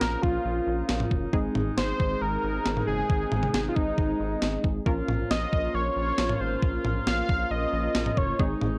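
Driving and nocturnal, this short synth-pop passage, cut from a longer piece, moves at 136 BPM in a straight 4/4 feel in Bb minor, with the chords shifting from Bbm to Ab at 1.3 seconds and back to Bbm at 4.9 seconds. A bold, retro octave-doubled lead carries the melody up front, its bright sawtooth and triangle tone colored by chorus, vibrato and digital delay. Beneath it, a punchy, funky polysynth comp with detuned sawtooth and square waves supplies plucky chorused chords, while a rubbery, hollow square bass bounces along with a resonant filter pluck. A woodwind section adds sustained chords in a classical ensemble style with light vibrato. The clean 12-bit drum machine sits up front with a thumpy kick, a medium-tuned snare and toms, and it sounds re-recorded in a large room. The whole mix carries little reverb and the worn, warbly pitch drift of old cassette tape.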